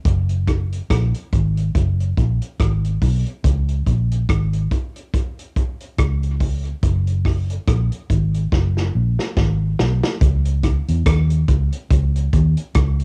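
Dub reggae at 71 BPM with a swung sixteenth feel, hypnotic and spacious, this cut from a longer piece pairs a punchy, rolled-off vintage drum kit of hi-hat, kick, rim click and medium-tuned snare with a dark, round, foam-muted fingered electric bass carrying transformer saturation, both up front in a dry cassette home recording, with a drum fill from 8.5 to 10.2 seconds leading into a new section.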